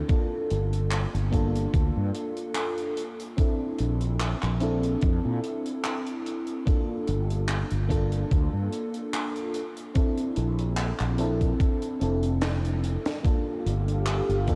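Faded and dreamy, this slow 73 BPM vaporwave piece in Bb lydian drifts through a cathedral-sized reverb as a lush FM electric piano with a soft pad layer, lightly chorused and delayed, alternates Gm7 and Bbmaj9#11 over a growly, chorused fretless bass, a thumpy, gritty sampler kick and a crisp fusion kit of handclaps, hi-hat and a high-tuned snare, with a drum fill at 12.4 seconds before a silky, warbling string machine enters at 13.2 seconds.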